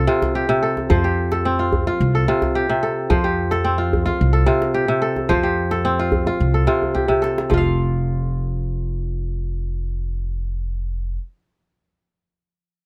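West African traditional music for strings and percussion, this short excerpt from a longer piece feels joyful and hypnotic, moving in a straight four-beat pulse. The kora sits up front throughout, its fingerpicked arpeggios ringing out crisp and warm over a repeating two-chord cycle that keeps returning to F. Beside it, an upright bass, also close and present, plays pizzicato on gut strings with a woody, thumpy tone. A djembe struck with hard hands adds tight, cracking accents from the start, rounding off its part with a drum fill around 6.8 seconds before falling silent at 7.8 seconds, leaving kora and bass to carry the closing moments. The sound is dry and intimate, captured by close, detailed microphones that bring out every pluck and slap.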